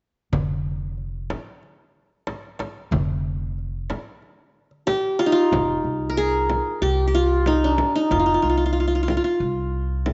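Longing and melancholic, this short section of a Turkish makam ensemble piece moves in a steady, straight four. From 0.3 s, a woody, dark upright bass sits up front, its steel strings played pizzicato low in the register, while a deep, large frame drum struck with hard hands anchors the pulse from close and dry. A crisp, small metal-shelled darbuka, played with soft hands and pitched high, adds detail to the opening stretch before dropping away at 5.3 s. At 4.9 s, the qanun steps forward as the melody, its plectrum-plucked triple strings sounding bright-edged yet warm, carrying the makam's characteristic inflected pitches into the second section. An echo chamber reverb gives the ensemble a moderate sense of space, and the top end is rolled off above 7.8 kHz, lending the whole a softened, intimate color.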